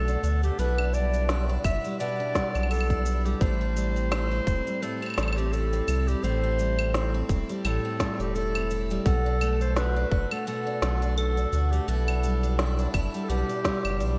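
A solo clarinet, roughened by vintage 12-bit sampler grit and tape echo, carries the melody in this intimate, autumnal, gently swung folktronica excerpt, over shimmering, octave-doubled arpeggios from a picked twelve-string acoustic guitar with its own tape echo and audible finger squeak, a round, deep sine sub bass sitting up front, and overdriven electronic shaker, claves and woody snare, with a tight electronic kick joining at 1.6 s, the mix soaked in a dreamy, lush hall reverb.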